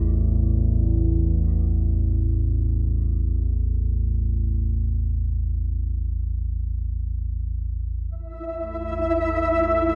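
Dark ambient drone in free time, ominous and vast, this excerpt opens on a deep rumbling drone that sits up front with a dark, sustained low tone, its built-in reverb and subtle chorus spreading through an echo-heavy spring-reverb space. Around 8.4 seconds a flickering, grainy granular texture appears up front, and at 8.6 seconds a blurred, cloudy pad of evolving sustained chords joins in the background. The harmony moves from F to A5 at 8.1 seconds, just before the texture thickens.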